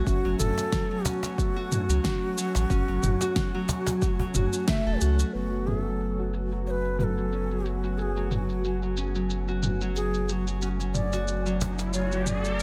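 Earthy and hypnotic, this organic downtempo fragment moves at 91 BPM in 4/4 with a light sixteenth-note swing, resting on an F# minor chord throughout. A hollow, chiffy cedar flute carries the melody with vibrato and a touch of delay, while a bright, ringing Celtic harp plays fingerpicked arpeggios through a low-pass filter and delay. Behind them, an ethereal detuned pad holds sustained chords with ensemble chorus, its own reverb and sidechain pumping, and a dark bronze singing bowl adds a soft, slowly beating metallic shimmer in the background. A round sine sub bass sits up front with sidechain pumping, joined by a tape-warm deep house kit of fat snare, shaker and toms, a deep electronic kick that stops at 4.8 seconds, and a woody cajon played with soft hands. After a band accent near 4.7 seconds, filter sweeps move across the drums and harp from 5.3 seconds, and an electronic riser builds from 11.3 seconds to the cut in a small, lightly reverberant room.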